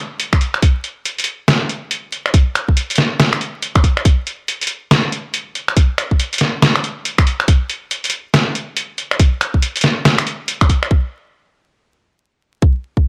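Meditative and brooding, this dubstep excerpt moves at 140 BPM in a half-time feel with a 62% swing on the sixteenths. A sampler-style trip hop kit of finger snaps, hi-hat and a medium-tuned snare sits up front, compressed, pitched down, muffled and re-recorded in a small room, while a tight, layered electronic kick anchors it and carries on alone from 10.9 seconds until 13.0 seconds. The dry, gritty production adds transformer saturation, vinyl crackle and a light touch of reverb.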